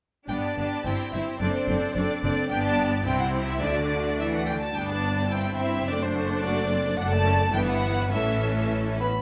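A graceful, lively classical-period movement for symphony orchestra opens at 0.3 seconds with bowed strings: up-front violins carry the melody, a more distant second violin line and rich viola accompaniment sit beneath, and clear cellos with lush double basses anchor the bass, all played with vibrato at a quick 108 BPM in 2/4 with a rubato feel. The harmony moves through G, C and D7 before turning toward E minor and A. In this brief cut from a longer piece, a distant French horn section touches a single sustained note at 9.0 seconds, all within the moderate bloom of a scoring-stage reverb.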